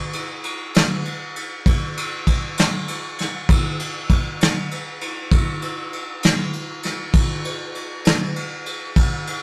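A vintage brush drum kit carries this short blues excerpt on its own, with brushes on a medium-tuned snare, a tight kick and dark ride cymbal sitting up front in a small, acoustic room. The mood is mournful and soulful at a slow 66 BPM in 12/8 with a straight feel. The kit's sound is warm with a rolled-off top, and moderate studio reverb gives this rough rehearsal-room recording a modest sense of space.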